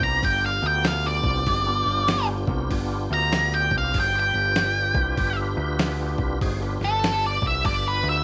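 An octave-fuzz lead guitar, dark and up front with distortion and slapback echo, solos through this gritty, driving blues rock and southern rock excerpt with a swung 4/4 feel, backed by a growling, overdriven picked electric bass, a dusty, compressed sampler-style drum kit with a thumpy kick and fat snare that stops at 7.8 seconds, and a full, lightly overdriven tonewheel organ holding sustained chords through a slow rotary speaker and chorus vibrato, with little reverb on the mix.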